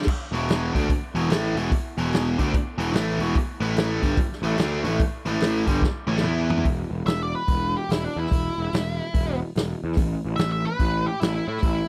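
A dry, close recording with a 1970s studio character and little reverb frames this driving, raunchy blues rock power-trio cut with southern rock leanings, moving at 145 BPM in 4/4 with a swung eighth-note feel. A biting, double-tracked overdriven guitar opens with a picked riff over E5 and A5 chords, its tone touched by spring reverb, and it plays until 6.7 s. Underneath, a round, fuzz-laden picked bass growls through overdrive while a vintage acoustic kit of punchy kick, medium-tuned snare, hi-hat, toms and dusky cymbals keeps a natural studio-room sound. The drums mark the turn with a fill at 5.8 s, and at 7.1 s a dark, distorted octave-fuzz lead guitar takes over with a picked solo. Guitar, bass and drums all sit up front, giving this short cut from a longer piece a raw, immediate punch.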